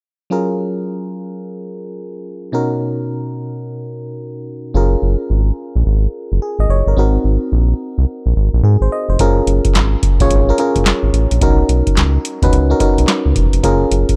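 A bouncy, flirty new jack swing excerpt in F# major opens with a mellow FM electric piano, its decaying chords moving through F#maj9, Bmaj7 and G#9 over a swung 108 BPM groove. A round, deep analog bass with a sustained sawtooth-and-sine tone joins up front at 4.7 seconds. At 9.2 seconds a booming analog drum machine arrives with a dry, deep kick, tonal snare, handclaps and metallic hi-hats, all set in digital ambience within a dark, warm production.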